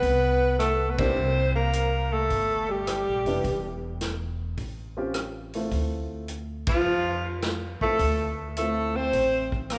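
A clear, up-front alto saxophone with soft-attack vibrato carries the melody from the first moment, joined by a breathy, subtoned tenor saxophone on a second line, over a woody pizzicato upright bass and a vintage drum kit with dark cymbals and a punchy kick, all in a sophisticated, playful small-group swing and bop feel at 105 BPM. A baby grand piano adds natural accompaniment from 1.0 to 8.9 seconds, while the band hits accents at 0.9 and 6.6 seconds as the harmony moves through diminished, dominant and altered chords to a D minor seventh. A wet recital-hall reverb gives this short excerpt from a longer piece the spacious glow of a church or concert hall.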